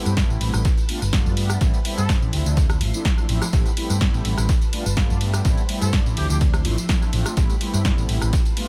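Filtered disco house at 125 BPM in A minor, funky and nostalgic, cycling through Am9, G9 and Dm9 chords with sidechain pumping on the bass, synth brass, strings and trumpets. An up-front, punchy electronic kick and a tape-warm analog drum machine with tambourine, ride and tape echo drive a round, dark hollow-body bass with tube saturation, while detuned sawtooth synth brass with chorus and phaser sits over lush string-machine chords in the background. A trumpet section with light vibrato adds brief echoed phrases at 2.0 and 5.8 seconds in a dry, echo-heavy mix cut from a longer piece.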